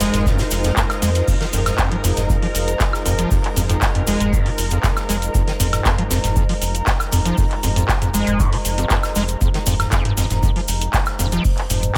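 Trippy and gritty, this acid house excerpt runs at 118 BPM in a straight 4/4, sitting on a single Fm7 chord throughout its twelve seconds. An overdriven acid bass carries the riff with a squelchy, resonant square-wave tone, distorted and filter-swept, its notes decaying into ensemble chorus and dub echo, while a round analog bass holds down the low end with a dark, sustained sine-and-sawtooth body and sidechain pumping. The beat is led by a deep, dry electronic kick drum that enters at 0.3 seconds, joined by a booming analog drum machine placed up front with metallic hats, handclaps, toms, woodblock and crash cymbal. Behind them, an airy unplugged drum kit adds hi-hat and a medium-tuned snare played with bundle sticks, high-pass filtered and set back in a small room, and a grainy, close cabasa brings bright acoustic texture. A lush vintage string machine sustains chords in the background with a slow attack and pumping, while a warbling, detuned tape-like pad drifts above with nostalgic lo-fi character, chorus and its own reverb. 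Light digital ambience ties the mix together.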